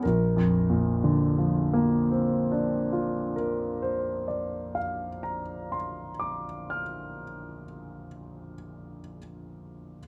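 A clear, intimate grand piano plays solo from 0.0 to 10.0 s, up front with audible action noise and long sustain, ranging from Bb1 to F6 and opening on a Bbadd9 chord. This dreamy, luminous fragment of impressionist classical piano sits in Bb major and 9/8 at 24 BPM in dotted quarters, with a rubato feel and tuning at A4 = 441 Hz. A moderate large-studio reverb of 1.2 s surrounds the polished tone, and the opening section runs to 7.7 s.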